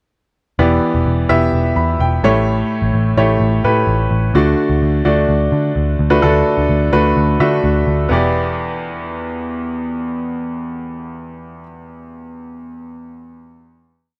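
A bright grand piano and a dark, foam-muted electric bass enter together at 0.6 seconds in this earnest, dramatic piano-driven pop piece in E minor at 128 BPM, moving through Em7, A7 and D. The brilliant, up-front piano plays syncopated chords in drop2 voicing with short fills, while the round, amped vintage bass drives steady eighth notes beneath it. From 8.1 seconds the piece settles on a final Em7 chord, the bass ending at 11.6 seconds and the piano ringing on to 14.2 seconds, all captured as a dry, close 1970s-style studio recording with light reverb and small room ambience.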